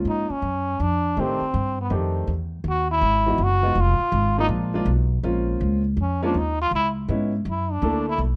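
A swung 4/4 groove carries this smoky, late-night jazz fragment, where a buzzy, breathy trombone in a metal mute takes the solo melody with vibrato and a plate-reverb sheen, backed by clear concert grand piano accompaniment and woody pizzicato upright bass through shifting chords like Bbm7, Emaj9 and Gb7alt, all captured with close, detailed microphones and light room reverb.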